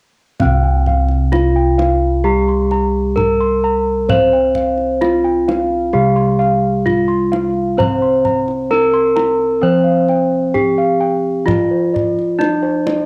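Shimmering and serene, this short cut from a longer Javanese gamelan piece moves at an unhurried 65 BPM in straight 4/4, set in C slendro. A bronze metallophone struck with a horn mallet carries the melody, bright, airy and up front, while a second metallophone played with a wooden mallet rings out the accompaniment in the register below. Bossed gongs played with padded beaters spin arpeggios in the upper range, mellow and soft with a close, full sound and a touch of plate reverb. A second set of bossed gongs anchors the bass, round and beating, sitting forward in the middle of the mix, and a deep acoustic kendang adds percussion with a live-room quality. All five parts play together from 0.4 to 13.1 seconds, and the cassette home recording lends the metallophones and upper gongs a slightly worn character within a moderate studio ambience.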